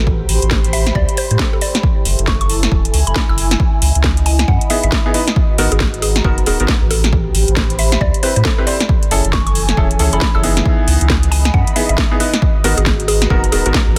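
A swung two-step garage groove at 136 BPM drives this late-night, skippy UK garage excerpt in C# minor, built on a dry, punchy overdriven electronic kick and a layered garage kit of cracking snare and metallic hats beneath a deep, round dub sub bass thickened by tube saturation. A woody, mallet-like FM pluck sits dark in the background with chorus, phaser and tape echo, while an airy, breathy pad pumps with sidechain over a cycle of Am9, F#m9, C#m9 and G#m9 chords. From 4.7 seconds a clear but worn grand piano adds stabs roughened by 12-bit sampler grit and tape echo, and the mix sits in light reverb under a dense, heavily limited modern master.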